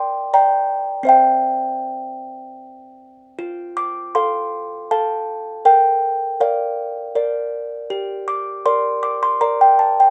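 Tender and innocent, this short classical lullaby is cut from a longer piece and moves at a gentle 79 BPM in 3/4 time with a straight feel, centred in F major. A single music box carries the whole passage alone, spanning a range from C4 to D6 across its 10.1 seconds. Its tone is delicate and tinkling, with the plucked, mellow softness of a small box, sitting up front with a mid-forward presence. The harmony drifts from G minor through C and F to B-flat before returning to G minor near 7.9 seconds. A light reverb gives the lone instrument a touch of space around its soft chime.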